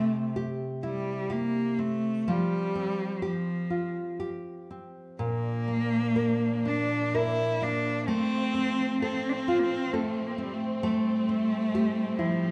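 A rich, expressive solo cello carries a haunting, longing Celtic slow air, bowed up front with vibrato, soft attacks and portamento, over fingerpicked nylon-string guitar in a slow, rubato 3/4 at 59-67 BPM, and a lush, distant string section joins at 5.2 seconds with sustained chords, all set in a moderate concert hall reverb in this excerpt from a longer piece.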